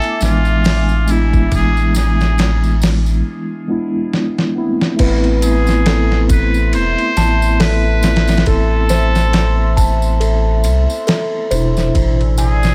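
A swung sixteenth-note groove in 4/4 drives this dark, hypnotic trip hop excerpt, carried by a dusty, gritty sampler-style drum kit with a thumpy kick and a medium-tuned snare, a tambourine in the background, and a round, deep sub bass sitting up front. A nasal, muted trumpet with dub echo sings the melody over a mellow tine electric piano treated with harmonic tremolo, 12-bit sampler grit and tape echo, while a warbling, nostalgic pad holds chords with chorus. After a break at 3.3 seconds and a drum fill at 4.1 seconds, a delicate, tinkling music box enters at 5.0 seconds with tape-echoed arpeggios, all in a dry room.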